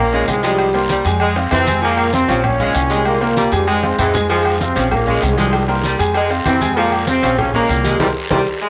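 A punchy trombone section leads this fiery, passionate salsa excerpt up front, with an edgy saxophone section adding a vibrato-laden second line over a brilliant, worn grand piano and a woody, thumpy pizzicato upright bass. Close, dry congas and ringing metal-shell timbales with agogo bells drive the groove from the background alongside a raspy, close and dry guiro, while a round, distant cowbell enters very quietly at 4.3 seconds. Drum fills arrive at 3.8 and 8.0 seconds, the second joined by a full-band accent, all set in an echo-chamber reverb with small-room ambience.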